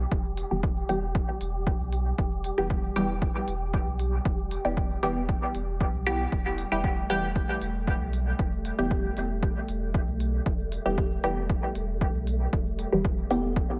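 Dub techno with a hypnotic, deep mood, this short excerpt from a longer piece rides a straight 4/4 pulse that holds on a single E minor chord throughout. A punchy electronic kick and smooth electronic hi-hats sit up front, both carrying the close character of a small room. Beneath them, a soft, round dub sub bass sustains in the low register, breathing with sidechain pumping. Filtered dub chord stabs, muted yet full-bodied with a short plucked decay, are coloured by phaser and trailed by dub echo as they pump with the sidechain. An airy, wind-like tuned noise texture drifts in the background from the start, dark and breathy, with its own reverb and a slow, sustained bloom, while a light reverb frames the whole mix.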